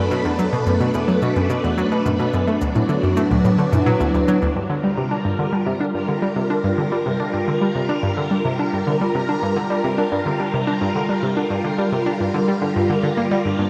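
Ambient, sequencer-driven space music with an expansive, cosmic mood, carried by a bright, up-front analog pluck riff with ring modulation, a filter sweep and analog delay, over swirling, vintage phased string-machine chords drenched in ensemble chorus and shimmer reverb. A very quiet, thumb-plucked concert harp rings out arpeggios beneath them, while electronic cabasa and toms sit in the background with delay until 4.5 seconds, and the chords move from Bm7 and D to Gm7 at 4.6 seconds. The whole excerpt floats in a lush hall reverb and carries the worn, warbling pitch drift of old cassette tape.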